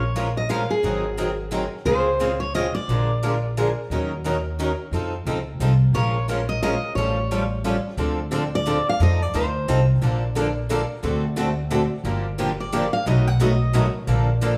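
A woody, thumpy pizzicato upright bass sits up front in this virtuosic, bittersweet slice of jazz manouche, a 177 BPM swinging waltz in 3/4 that moves from B-flat minor to D minor at 8.0 s. A warm, picked steel-string acoustic guitar carries the melody in phrases, while a bright, boxy second steel-string guitar and a picked swing-style acoustic guitar with audible finger squeak pick out the accompaniment. The band plays live together in one room, bathed in wet large-studio reverb, and the recording is cut from a longer piece.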